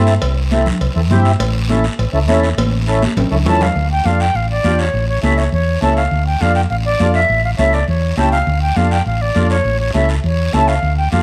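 A round, punchy hollow-body short-scale electric bass sits up front in this passionate, danceable cumbia at 204 BPM, joined by a reedy, boxy accordion, a raspy guiro and bright, high-tuned congas in the background, while ringing cowbell and timbales carry the opening through a drum fill from 2.6 s before an airy, distant silver concert flute with vibrato takes the melody at 3.5 s as the music moves into D harmonic minor under light reverb.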